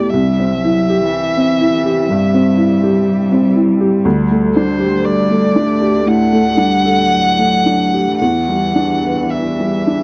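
Melancholic and reflective, this neoclassical piano-and-strings excerpt drifts in a rubato 4/4 at around 54-62 BPM, moving from C through Dsus4 to Em7. A worn, woody upright piano with a slightly detuned, boxy character and long sustain carries the accompaniment up front, while a single con sordino violin sings a veiled melody with vibrato and a lone muted cello adds a dark, smooth-topped second line with a soft attack. The sound is dry and close, in the manner of a 1970s studio recording.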